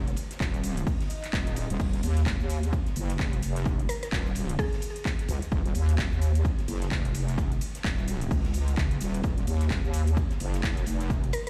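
A heavy, saturated wobble bass drives this bouncy, swaggering bass house clip, its detuned square-and-sine unison pumping against a punchy, overdriven electronic kick that sits up front beside it over a swung 16th-note groove on an Ebmadd9 chord. An overdriven house kit adds metallic hats, shaker, handclaps and crash, while an oversized low-tuned acoustic kit with a fat snare, gritty hats and ride sits dark in the background, and a brief electronic swell sounds in the background from 1.0 to 1.8 seconds. A woody, round mallet-like synth pluck with chorus and tape echo appears at 3.9 seconds and again at 11.3 seconds, all heard as if played on a big sound system in a bare stone room.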